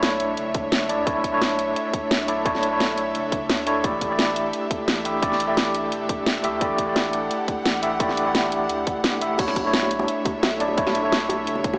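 Heard through a small-speaker tone with a moderate plate reverb, this rolling, melancholic liquid drum and bass excerpt moves at 173 BPM in B minor, shifting from Bm11 to A7sus4 and back. Up front, a barky, overdriven tine electric piano with fast tremolo and vintage 12-bit sampler grit carries the accompaniment. An airy, breathy pad with chorus and sidechain pumping holds soft, detuned chords, and a round sine sub bass sits deep in the background. A garage drum kit with a cracking snare, bright hats and crash cymbal plays in studio ambience, joined at 0.5 seconds by a tight electronic kick, and low-tuned bongos played with soft hands arrive at 9.4 seconds.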